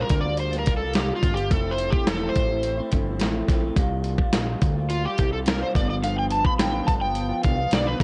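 A straight 4/4 groove from a dusty, sampler-style soul drum kit sits up front, its thumpy kick, medium-tuned snare and hi-hat sounding gritty and compressed, as if re-recorded in a large room. This hazy, dreamy slice of indie and bedroom pop, cut from a longer piece, is carried by an overdriven slide guitar solo that runs through all 8 seconds, its fingered lines placed up front and colored by analog chorus and analog delay. Beneath it, an electric guitar through a small old amp plays picked, slightly broken-up accompaniment with subtle chorus and a vibrato effect. A fat analog bass fills the low end with a thick, mellow blend of sawtooth, square and triangle tones, detuned and ring-modulated, with a filter sweep, fast attack and transformer saturation. The harmony moves from C7sus4 to Fmaj7, back to C7sus4 and on to G7, all wrapped in light reverb, digital ambience and the worn, warbling pitch drift of old cassette tape that rolls off the top end.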